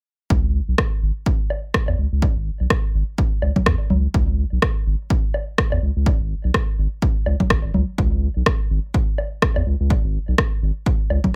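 A deep, thick sub bass with a sine-like, saturated tone, fast attack and sustained notes sits up front in this sparse, clinical minimal techno excerpt, pumping from the sidechain at 125 BPM in C# minor with a swung 16th-note feel. A punchy, layered electronic kick and a tape-warm electronic rim click, entering at 0.8 seconds, sit in a small room ambience. Analog woodblock and congas join at 1.5 seconds, lower in the mix and touched with digital delay, all within a dry sound that carries little reverb.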